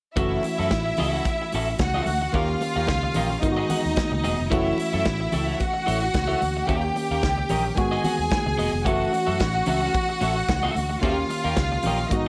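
A straight 4/4 disco groove at 111 BPM drives this short cut from a longer piece, its modern drum kit pairing a punchy kick and medium-tuned snare with hi-hat in a natural small-room sound. The dark, foam-muted fingered electric bass sits round and low beneath it, while very quiet, high-tuned congas add a bright, thin-skinned edge from close by. A worn, slightly out-of-tune tine electric piano comes through a combo amp, and an electric guitar, picked and compressed, sits just at the edge of break-up with a subtle chorus. Up front, a lush, bowed string section plays a focused second line with vibrato, giving the sultry mood its sheen. All parts play from about 0.2 seconds to the end at roughly 12.3 seconds over a cycling F#m7, D#7 and G#m7 progression in F# dorian, bathed in light reverb and small room ambience.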